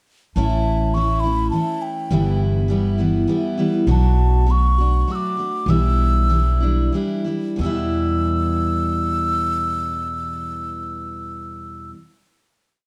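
A mellow, hollow wooden flute carries a haunting, melancholic melody of short song-like phrases in this brief acoustic folk piece in three-time, its airy straight tone and crisp attack set in plate reverb. A full-bodied, fresh-stringed steel-string guitar strums open chord shapes beneath it, while a thumpy, woody pizzicato upright bass with gut strings plays a dotted figure up front. The music slows from 3.9 seconds and settles onto a sustained final Em7 chord at 7.6 seconds, all within a dark, lightly reverberant production.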